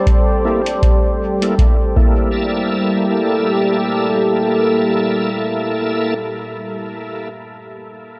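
A deep, moody pad opens this hazy, spacious ambient dub excerpt at 79 BPM in G dorian, sustaining a Gm69 chord with detuned sawtooth and sine layers, a sub octave, wave-folding and ring modulation under chorus and reverb. A dry, deep analog kick sits up front beside a muffled, compressed hi-hat, both brief, while from 0.4 s a bright, shouting tonewheel organ plays lightly overdriven stabs through chorus vibrato, a slow rotary speaker, a low-pass filter sweep and dub echo. A moderate echo chamber reverb lends the mix its depth, and the sixteenths carry a light swing.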